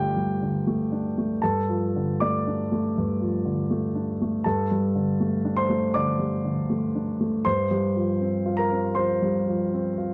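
In a rubato 4/4 at 80 BPM, this melancholic, wistful neoclassical minimalist piano fragment, cut from a longer piece and tuned to A4 = 442 Hz, features a single up-front, warm grand piano spanning G2 to D6, moving from Gsus2 to Csus4/G at 7.5 seconds within a moderate small-room reverb and a dark production.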